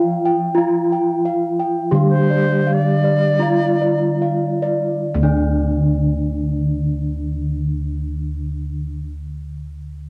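In a straight 4/4 pulse at a very slow 35 to 48 BPM, this short excerpt from a longer Javanese gamelan piece slows over its first 5 seconds, then settles into a second section, carrying a ceremonial, serene mood. Up front, a bronze metallophone carries the melody with a ringing, wooden-mallet tone whose paired tuning gives shimmering beats. Beneath it, a second metallophone plays the accompaniment in the background with soft padded disc mallets and a boxy small-room color. The bossed gongs supply both mellow, soft arpeggios, which carry a vintage, band-limited cassette character with tape echo, and a round, beating bass made gently gritty by tube saturation. A bright, reedy xiao adds an airy second line with vibrato from 2.1 to 4.7 seconds, lending a bamboo breathiness over the bronze. The home cassette recording has light reverb and a homely, lo-fi intimacy.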